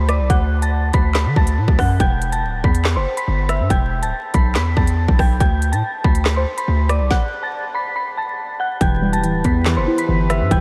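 This drill hip hop cut moves at 141 BPM in 4/4 with a half-time feel, its electronic drum kit punching up front with a hard-clipped kick, woody snare, crisp hats, rim clicks and handclaps. A hard-hitting 808-style bass sits alongside it, heavy and sine-based with a noise layer and fast, decaying hits, while a dark, detuned synth bell carries the eerie melody in a high register, its inharmonic FM tone treated with chorus, a low-pass filter and tape echo. Set in E minor and moving between D and Em, the mood is cold and menacing, framed by light digital ambience and a bed of vinyl crackle. A stop breaks the flow from 7.1 to 8.8 seconds, after which a warbly, dusty pluck with a lo-fi, detuned square-and-sawtooth character joins as accompaniment. A mellow brass ensemble enters at the same moment with smooth, classical-style sustained chords underneath, carrying this short excerpt to its close at 10.6 seconds.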